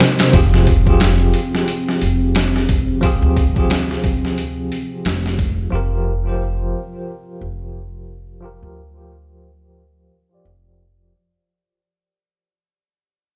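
Brooding and melancholic, this trip hop excerpt moves at 89 BPM in 4/4 with a 16th-note swing, set in F dorian and tuned slightly flat at A4 = 439 Hz. A bell-like tine electric piano sits up front, bright and clean through its built-in speakers, coloured by tremolo, vintage 12-bit sampler grit, a low-pass filter, tape echo and a filter sweep. Beneath it a dark analog pad holds sustained chords from the background, its detuned sawtooth and triangle tones, sub octave and slow attack thickened by chorus. A pizzicato upright bass with steel strings adds a woody, tube-saturated low end, while a compressed, pitched-down, muffled, overdriven sampler-style drum kit with a thumpy kick and medium-tuned snare plays up front until 5.6 seconds. The harmony moves from Fmadd9 to Gm/F at 5.7 seconds, and a fade-out runs from 0.3 seconds to the end. The sound rolls off above 10.6 kHz and is heard as if played on a big sound system in a bare stone room.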